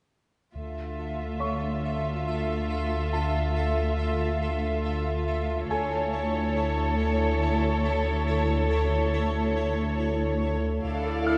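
A pulsing, detuned gated texture with chorus opens this eerie, uneasy cinematic cue in 3/4 at 0.5 s, joined at once by veiled con sordino violin, cello and double bass sections over a deep sine sub-bass drone, with a clear grand piano sitting in the background from 1.4 s and a muted violin melody and lush viola entering only at 10.8 s, the whole cue held in a wet scoring-stage reverb.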